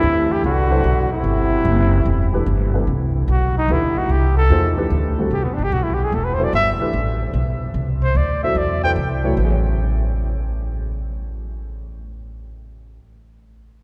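Awash in deep church reverb, this spiritual, hypnotic swing jazz excerpt at 148 BPM features a breathy, close-miked trumpet with vibrato and scooped notes that solos from 2.9 to 9.4 seconds, a punchy, vintage-toned trombone in the background only until 2.4 seconds, a dark, short-sustained upright piano, and an up-front, thumpy gut-string upright bass played pizzicato, over harmony moving from Cmaj9 to Amaj9 at 9.4 seconds.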